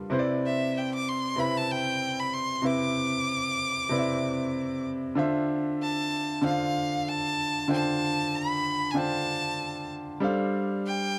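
Soul piece with a bittersweet, cinematic mood, cut from a longer work, where a concert grand piano with deep bass accompanies from the start, a single bowed violin enters at 0.5 seconds with an intense, biting vibrato melody up front, and the chords move from Cmaj9 to Dm7 at 5.2 seconds and G9sus4 at 10.2 seconds within a dark production and light reverb.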